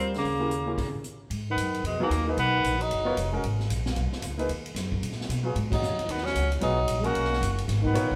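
Wet stone-room reverb surrounds this cool, hypnotic modal jazz played live in one room at a swinging 226 BPM in G# dorian, where an up-front, vintage-toned tenor saxophone with breathy vibrato leads the melody over a dark, smooth-topped trombone second line, a polished baby grand piano accompanies, a woody pizzicato upright bass holds the low end, and a distant, roomy big-band drum kit with a punchy kick swings underneath, the band halting briefly at 0.8 seconds and the horns falling away at 3.3 seconds before returning on a band accent at 5.7 seconds.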